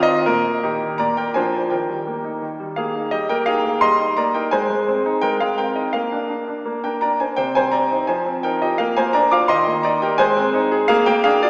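Cheerful and playful, this brief excerpt of a classical-period piano sonatina moves at 85 BPM in 2/4 with a straight feel, in E-flat major and tuned slightly high at A4 = 443 Hz. A bright, polished concert grand plays solo from Bb2 to D6, its brilliant tone, deep bass and short sustain sitting present and up front even as a long, wet scoring-stage reverb places the listener further back in the room with a small-speaker quality. After a brief opening phrase, a longer passage begins at 1.7 seconds, moving through harmonies such as Cm, Fm7 and Bb7 before the clip is cut off at 11.5 seconds.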